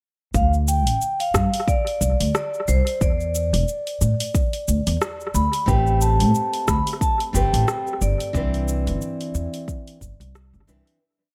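Sunset chillout at 90 BPM with a relaxed, wistful mood, built on a swung groove where a deep, soft electronic kick and a light lounge beat of dark hi-hats, rim clicks and shaker sit under a thumpy, woody upright bass playing a syncopated riff up front. A close-miked vibraphone with medium mallets and its motor off rings out a metallic, motif-based melody of call phrases through analog delay. At 5.7 seconds a fingerpicked nylon-string guitar enters with full-bodied held chords and syncopated pushes over Am9 and Cmaj9, before the piece fades out from 7.5 seconds in an echo-heavy small room.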